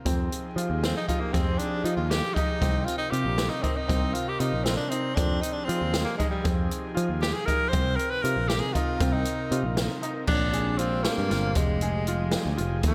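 Progressive instrumental band music in a driving, intricate 5/8, this short cut from a longer piece features a clear, soft-attacked tenor saxophone with jazz-style vibrato taking an up-front solo from 0.8 s, carrying slapback echo and digital delay over chords moving between Fm9 and Cm7 before a Bb13 turn at 10.3 s. A boomy-kicked open jazz drum kit with dark cymbals and a round, picked electric bass sit up front, while an intimate baby grand piano, its action noise audible, plays echoed arpeggios in the background beside a breathy, warbling, detuned pad with chorus. A lush hall reverb gives the whole band a big arena sound.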